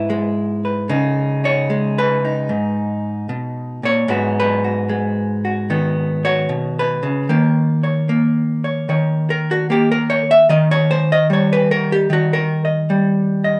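Moody and late-night, this solo jazz excerpt moves at an unhurried 75 BPM in 4/4 with a gentle swing on the eighth notes, passing through C#m9, G#m7 and D#7. A single vintage hollow-body electric jazz guitar carries the whole 13.6 seconds, its clean, picked tone dark as it ranges from G#2 up to E5. The guitar sits up front in a modest booth ambience that adds just a touch of close, intimate air.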